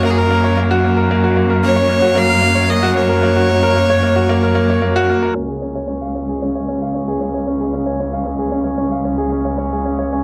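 Piano and strings electronica at 113 BPM in a straight 4/4, hopeful and luminous, this excerpt pairs a brilliant, intimate baby grand piano riff with delay, audible action noise and long sustain against a lush, intense cello section bass full of vibrato, while a nasal, airy-bowed solo violin with delay carries the melody until 4.8 s, set in a moderate echo chamber reverb as the harmony moves from Gb to Db and a filter sweep begins at 5.4 s.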